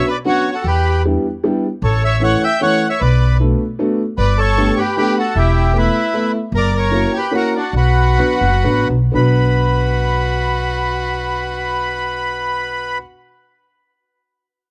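A straight 3/4 lilt drives this whirling, nostalgic musette waltz in B minor, moving between 115 and 154 BPM and slowing from 6.5 to 9.2 seconds as the F#7 resolves to Bm before a new section begins. A reedy, full accordion carries the melody up front, joined by a single bowed violin playing a second line with vibrato and a focused, smooth top, while a clear, woody upright piano with audible action noise comps through chords like Em7, A and Gadd9. From 0.6 seconds a thumpy pizzicato upright bass on gut strings anchors the bottom, all captured in a dry, close, 1970s-style studio sound cut from a longer piece.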